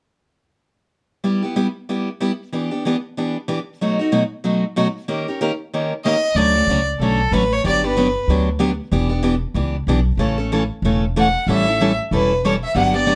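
A bowed violin with light vibrato, nasal and earthy yet set at a distance, carries the melody in short phrases at 6.0 and again from 11.2 seconds in this playful, swinging excerpt of acoustic string swing in D major at 188 BPM. A bright picked steel-string acoustic guitar with fresh strings and audible finger squeak opens alone at 1.2 seconds, comping through chords such as G6, Eb7, Dmaj7 and A7, while a woody, thumpy pizzicato upright bass on gut strings joins at 6.3 seconds. Moderate studio reverb gives the trio a sense of room, with each instrument sitting up front.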